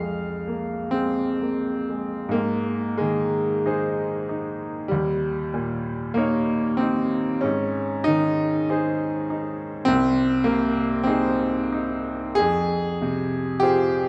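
The rhythm flows freely in a slow, rubato 4/4, with the pulse stretching and settling as a romantic nocturne for solo piano unfolds in a mournful, melancholic mood. A single grand piano carries the whole piece, its tone bright and brilliant yet smooth, with a vintage character and a long sustain that lets each chord ring. Sitting up front, it spans from C2 up to F5, and a wet concert hall reverb surrounds it with a lingering tail inside a dark, warm production. The harmony opens on F minor, moves to A-flat major at 2.4 seconds, passes through E-flat seventh, and returns to F minor at 12.4 seconds. This brief fragment, cut from a longer piece, ends at 14.1 seconds.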